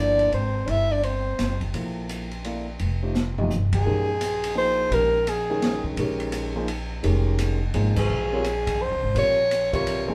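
Modal jazz in a swinging 3/4 at 170 BPM, this short, cool and spiritual cut from a longer piece settles into Bb dorian after 3.9 seconds, with a close-miked soprano saxophone carrying the melody in brief phrases and a veiled, breathy cup-muted trombone adding a soft second line only in the opening 1.6 seconds. A grand piano with long sustain and a woody pizzicato upright bass play throughout, while an open drum kit with dark cymbals and a boomy kick supplies the groove. A drum fill leads into the second section at 3.9 seconds, and the band hits accents at 3.7 and 7.9 seconds, all captured live in one room with moderate reverb.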